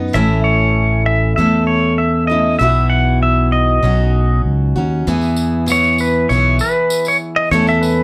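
A picked steel-string acoustic guitar, bright and full-bodied with a dreadnought's depth, opens this gentle, nostalgic acoustic folk piece alongside a fingered electric bass that sits up front with a direct, amped tone. Almost at once a clean, compressed pedal steel guitar carries the melody in a high register, played with fingerpicks and slide and shaped by volume swells. The band moves at an unhurried 98 BPM in a straight 4/4 in E major, drifting from A through Bsus4 and Badd9 to E, then to A/E. At 5.1 seconds the pedal steel takes a solo, and a jingly tambourine joins at 5.2 seconds, sitting well back in the mix. A moderate small-room reverb places the whole group a little further back, giving this short slice of a longer piece a cozy, intimate feel.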